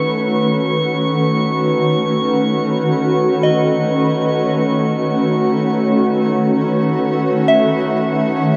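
Floating in free time, this ambient excerpt of about 8.6 seconds drifts in a serene, warm mood, tuned to A4 = 437 Hz and resting on a single Aadd9 chord. Up front, a granular cloud pad holds sustained chords from D#3 to B4, its triangle tone cloudy, blurred and evolving, with slow attacks, long releases and a filter sweep running across its whole length. In the background, a soft FM synth bell plays arpeggios between C#5 and E5, its pure, vintage tone warbling through chorus and tape echo as each fast-struck note decays. High above at C#6, a calm sine-based glass-harmonics texture with drifting overtones sustains with chorus and its own reverb, adding a glassy shimmer. Everything sits in a vast, echoing space with a huge, long reverb tail and the grain of cassette tape.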